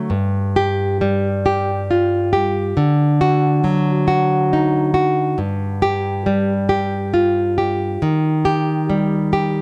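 A lone nylon-string guitar opens on an Fsus2/G chord, its fresh strings giving a full-bodied, up-front voice in this passionate, intimate romantic piece for solo classical guitar. The fingerpicked playing moves in a slow 6/8 at 46 beats per minute, counted in dotted quarters, with a rubato feel that lets the phrases breathe. The harmony shifts to D at 2.8 seconds, returns to Fsus2/G, and then settles on Eb at 8.0 seconds, all within a single section. The guitar stays between G2 and G4, tuned slightly high to A4 = 441 Hz, with a deep classical tone. Light reverb surrounds the instrument in this short passage, which is cut from a longer piece and ends at 9.6 seconds.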